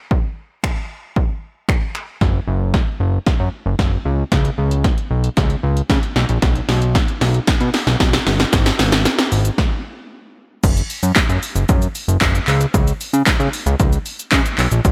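A straight 4/4 pulse at 114 BPM drives this driving, bittersweet dance-pop passage, built on a punchy analog drum machine of kick, snare, handclaps, finger snaps, hi-hat, shaker and crash cymbal, with a short room on the snare, claps and hats and a tape-tinged, up-front sound. At 2.2 seconds a fat, detuned bass of sawtooth and square waves enters, saturated, with a plucky filter and sidechain pumping, ranging from F#1 to C#3, as a build-up and long drum fill lead to a stop at 9.6 seconds. The drop lands at 10.6 seconds, and the mix sits in light reverb.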